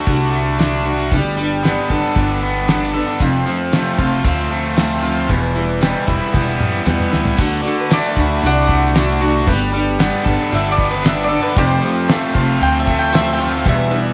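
A full-bodied picked steel-string acoustic guitar and a crunchy, double-tracked overdriven electric guitar riff open this hopeful folk and heartland rock excerpt at 115 BPM in G major, joined at once by woody pizzicato upright bass and a dark, dry 70s drum kit with a fat snare and tight kick, which plays a fill from 6.3 seconds before a bright, double-strung bowl-back mandolin takes a solo at 7.4 seconds over chords moving from D through Gadd9 and F, all set in a small room with moderate echo-chamber reverb.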